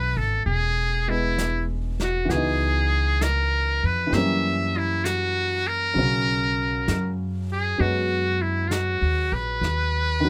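A tender, intimate jazz ballad fragment in a slow swing opens with a buzzy, thin metal-muted trumpet carrying the melody with light vibrato over a woody, polished upright piano and a pizzicato upright bass sitting up front, while a brushed jazz kit with a medium-tuned snare and hi-hat slips in at 0.5 seconds, all caught by close, detailed microphones in a dry sound as the chords move from Amaj9 through C#m11 and F#7b9 to Bmaj9.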